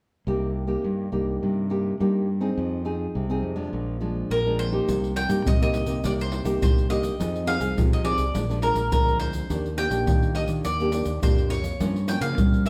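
A straight 4/4 samba and choro feel carries this bittersweet, yearning passage, with a fingerpicked, classical nylon-string guitar up front and a bright, punchy, overdriven fingered electric bass playing through seventh-chord changes from the start. A picked bowl-back mandolin with double strings enters on the melody at 4.3 seconds, bathed in plate reverb, and at 4.9 seconds tube shaker, deep surdo and soft-handed pandeiro join close and up front as the piece moves into a new section. The whole ensemble sits in a wet studio space, heard from further back in the room, and the passage is cut from a longer piece.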